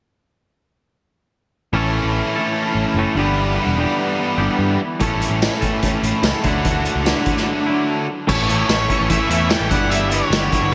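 A dreamy, reverb-soaked cathedral haze wraps this carefree, upbeat indie rock fragment at 147 BPM in A mixolydian, where an up-front overdriven guitar with chorus and ambient delay and a bright, twangy clean guitar ride riffs over growly, punchy picked bass from 1.7 seconds, a vintage drum kit with a pumping room sound, punchy kick and tambourine joins at 5.0 seconds, and a dark octave-fuzz lead guitar carries the melody from 8.3 seconds as the chords move through A, G6 and Dadd9.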